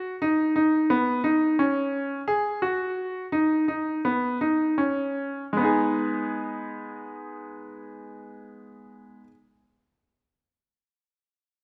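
A wet, spacious scoring-stage reverb surrounds a single concert grand piano, which sits up front with a brilliant top and a deep bass. This short, contemporary instrumental excerpt from a longer piece feels restless and hypnotic, its arpeggios cycling in 9/8 metre with a straight feel. The piano stays between G#3 and G#4, and its natural tone keeps the figures clear within the reverberant space. The harmony moves from a rootless G#m through D#madd11 and Badd9, and the pulse slows down over the first 5.5 seconds. At 5.5 seconds a new section returns to G#m, and the piano carries on until 9.3 seconds.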